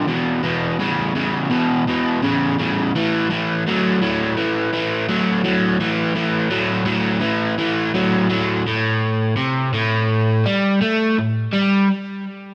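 Rock at 84 BPM in a straight 4/4, heavy and smoky, cut from a longer piece. A lone crunchy overdriven electric guitar, picked and double-tracked, sits up front with tape echo, moving from an E5 to an A5 power chord before the harmony drops out at 8.7 seconds; it stops at 11.9 seconds. The sound is a band playing live in one room, with a moderate studio ambience around the gritty, smouldering tone.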